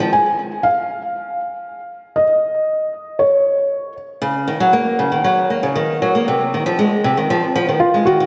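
Intimate and wistful, this short folktronica fragment, cut from a longer piece, moves at 117 BPM in a straight 4/4 and sits in Eb dorian. After a fleeting touch of picked acoustic guitar at the very start, a soft, felt-muted upright piano carries the melody from 0.1 seconds, its mellow tone placed up front and touched with tape echo. At 4.2 seconds the picked old ladder-braced acoustic guitar takes over with boxy arpeggios in its lower register, also close and colored by tape echo, as the harmony settles on Ebm7 before shifting to Fm7 at 6.3 seconds. The piano returns briefly near the end to sit alongside the guitar. A lush hall reverb soaks the whole mix, giving the dreamy sound a long, hazy tail around the two instruments.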